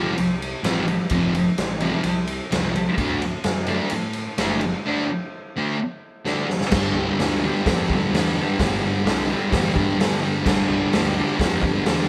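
A thick, double-tracked fuzz guitar riff opens this raw, rowdy garage rock excerpt at 128 BPM, backed from the start by a punchy, overdriven picked bass, with the drum kit joining at 0.2 seconds. The kit sounds gritty and saturated in a bright stone room, its punchy kick, medium-tuned snare, hi-hat, ride and crash sitting up front beside the guitar, with a rolled-off top. After a drum fill at 6.3 seconds, the straight 4/4 groove shifts from F and D chords to a G5 section, all caught with light reverb like a band playing live in one room.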